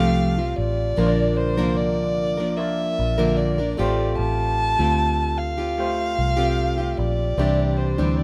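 A dry acoustic pop passage at 75 BPM in a straight 4/4, heartfelt and sunny, moving from Fadd9 through Bb and Fadd9/A to Cadd9. A dark, woody violin with vibrato carries the melody up front, beside a picked, plugged-in steel-string acoustic guitar with audible finger squeak and a round, punchy, foam-muted vintage electric bass. Set in the background, a bright upright piano adds brilliant accompaniment, its action noise audible.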